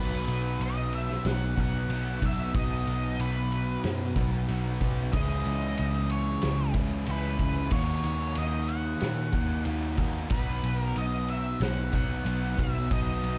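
This hazy, blissful shoegaze and dream pop excerpt opens with three electric guitars and a bass sounding together, and the drums join at 0.3 seconds. At 93 BPM in a straight 4/4, the music sits in B major and moves from B through C#m7 and D#m7 before returning to B at 10.3 seconds. A dark octave-fuzz lead guitar carries the melody above the band, its distorted picking trailed by analog delay. Beneath it, a crunchy overdriven guitar plays a riff wrapped in reverse reverb, while a thick fuzz guitar adds a second riff from the background with a subtle chorus. The vintage foam-muted bass is round, amped and punchy, sitting up front, and the loose indie kit of kick, snare and ride sounds roomy with a rolled-off top. Studio reverb gives the whole production a dark, warm haze.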